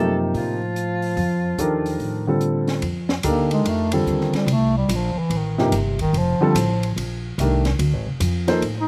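A brief cut from a hypnotic, searching modal jazz piece in F mixolydian at 145 BPM with a swung 4/4 feel opens with a distant, vibrato-laden soprano saxophone melody over a mellow bass clarinet line, an intimate concert grand piano with audible action noise and deep bass, and a woody pizzicato upright bass, with an open jazz kit of dark cymbals, high-tuned snare and boomy kick joining at 0.3 seconds. The saxophone drops out at 2.4 seconds, and from 2.8 seconds the close-miked bass clarinet takes a solo with light vibrato as the harmony moves from Dm through F13 to Dm/F. The overall sound is dry, with little reverb.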